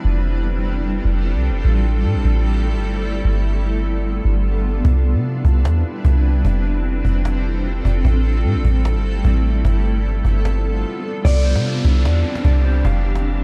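Ethereal and melancholic, this short cut from a longer atmospheric cloud-rap piece moves in a relaxed half-time feel under a dark, warm production with little room sound. A granular cloud pad holds blurred, evolving chords through the whole passage, cycling through F6/9, Am7, G9 and Cmaj9 and soaked in its own reverb, while a soft, round 808-style bass sits up front with a deep, decaying sine tone. A woody cajon joins at 4.8 seconds, tucked in the background with faint snares under soft hands. After a brief break, the closing stretch from 11.2 seconds moves to Cadd9 and back to F6/9 as a felt-muted upright piano offers a soft melody on D5, its action noise audible, and a clean, compressed electric guitar picks fingered arpeggios, both filtered and trailed by tape echo. An electronic downlifter sweeps beneath them, giving the final seconds a hazy, sinking quality.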